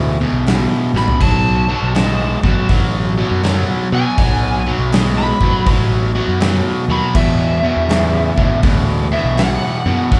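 A crunchy, double-tracked electric guitar riff opens this driving, raunchy blues rock and southern rock passage, sitting up front beside a growly, fuzz-soaked picked bass from the very start. A big acoustic rock kit joins at 0.5 seconds, with a drum fill leading into the groove; the kit has a dark, smooth tone with a fat snare, punchy kick, crash, hi-hat and toms. At 1.0 seconds an overdriven, fingered slide guitar enters high above the band, carrying the melody as a bright solo that runs to the end. The swung power-trio feel moves between E7 and B7 before settling onto an E5 chord at 7.2 seconds. Light reverb gives the sense of a band playing live together in one room, and the clip is cut from a longer piece.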